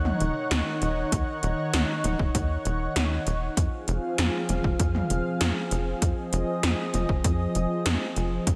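A lush, detuned unison pad with chorus and a tight, sawtooth-edged sequencer bass both pump to the sidechain over Ebm7 moving to Fm, while overdriven 80s electronic drums with metallic hats and a gated-reverb snare and toms join almost at once and a punchy analog kick lands at 1.1 seconds, giving this moody, nostalgic synthwave excerpt a driving, up-front feel in a light reverb.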